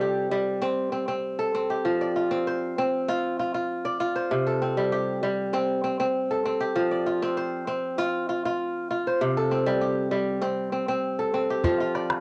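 Recorded at home on cassette in a moderate studio room, this short joyful clip from a longer piece of West African string and xylophone music moves at 98 BPM in a straight 4/4 in F major. A bright, crisp kora sits up front with ringing, fingerpicked arpeggios from 0.0 s to 12.2 s, its tape-tinged tone alternating between C5 and F5 notes. At 11.6 s a small, vintage-sounding, band-limited calabash enters quietly for the final moment.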